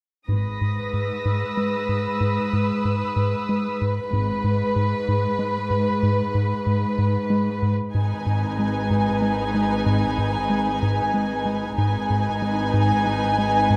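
A veiled, con sordino violin section carries the ominous melody up front in this eerie suspense film-score excerpt, moving in a steady 3/4 at 94 BPM in A-flat minor, tuned slightly low to A4 = 439 Hz. A round, deep analog synth bass with a fast, decaying attack drives a riff beneath it, supported by a dark muted cello section and a double bass section that enters in brief touches before playing through from 7.9 seconds. A lush, soft-edged high violin texture hovers until 3.8 seconds, and a second muted violin line with a smooth top joins at 8.0 seconds, all captured with close, detailed microphones and light reverb.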